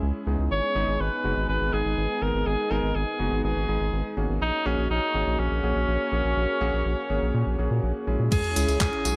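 A straight 4/4 pulse at 123 BPM drives this danceable, bittersweet italo disco passage, where a round, deep analog bass with tube saturation sits up front beneath a detuned, warbling analog pad with subtle chorus and clangy electric grand piano stabs softened by a low-pass filter. From 0.5 s a bright alto saxophone with light vibrato and digital delay carries the melody over chords moving from C#m to G#m and F#add9. At 8.3 s an impact lands as an overdriven, thumpy electronic kick and a 12-bit drum machine enter, the machine's crash, handclaps, hi-hat and tambourine in gated reverb, while a very quiet sub drop sinks beneath them, the whole mix sitting in a light reverb.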